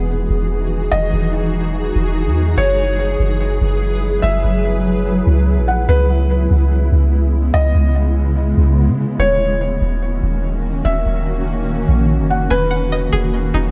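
A hazy, spacious hip hop excerpt in a half-time feel, cut from a longer piece and built on a slow drift of chords from Emaj9 through F#9sus4, C#m7 and D#m7 before returning to Emaj9. A cloudy, evolving granular pad sits up front from the start, its detuned, blurred tones swimming in built-in reverb, while a deep, round 808-style bass anchors the low end with soft, decaying notes. At 0.9 seconds a felt-muted upright piano enters with an intimate melody, its mellow, muffled tone softened further by a low-pass filter and tape echo. At 12.5 seconds, as the harmony comes back around, a twangy, string-like resonator pluck appears with bright arpeggios, thickened by chorus and tape echo. The whole mix carries a light reverb and a dusky, rolled-off top end that keeps the mood dim and dreamy.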